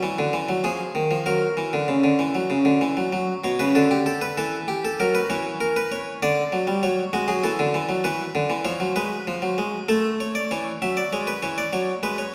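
A bright, plucked Italian-style harpsichord on a single set of strings plays alone and up front throughout, spinning an elegant, joyful baroque-style two-part invention in a straight triple metre. Its two voices range from B2 to E5 as the harmony moves through minor chords, sevenths and added-note colours, and the opening idea returns at 10.5 s. The instrument sits in a generous scoring-stage reverb, and this short passage is cut from a longer piece.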